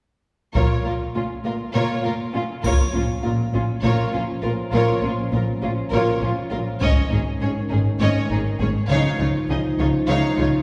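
Hard-stick taiko drums, close and dry, drive this dark, epic orchestral film cue in 7/8 until they drop out at 8.0 s, beneath lush bowed strings: a smooth, vibrato-rich violin melody over a focused second violin line, distant, expressive violas, and cellos and clear double basses anchoring the low end. At 2.6 s a build-up begins as a shadowy, roomy French horn section enters with sustained chords and a soft triangle adds a brief shimmer. The harmony moves from B-flat minor through Absus4 to Dbadd9, all set back in a reverberant scoring-stage space, in a passage cut from a longer piece.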